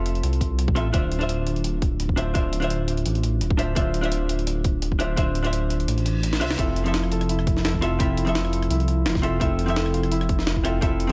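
This short cut from a longer liquid drum and bass track rides a 170 BPM pulse in 4/4 with a gentle swing on the sixteenths. A gritty, pitched-up breakbeat kit of hi-hat, rim click and high-tuned snare sits beside a tight, layered electronic kick, while a dark, detuned saw bass rumbles up front in the low register. A clean hollow-body jazz guitar, also up front, carries the accompaniment with a touch of delay over lush, uplifting F major chords moving from Fmaj7 to Dm9. The kick drops out around 5.9 seconds as a reverse cymbal sounds in the background and a drum fill lands at 6.3 seconds. At 6.6 seconds the harmony returns to Fmaj7 and a ringing, thumb-plucked concert harp enters with delayed arpeggios, all set in a light reverb.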